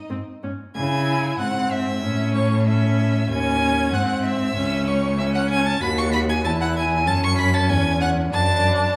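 Up front, the cello carries a rich, even bass line with vibrato from 0.1 s, anchoring this restless, urgent classical-period string quartet movement, taken from a longer piece and played at 95 BPM in 2/4 in C# minor with a flexible rubato feel. High above, one violin sings a smooth, warm melody up close with vibrato, while the second violin shapes a soft-attacked line with portamento. A more distant viola adds expressive accompaniment with vibrato and portamento, and the whole quartet sits in a wet recital hall reverb heard from further back in the room.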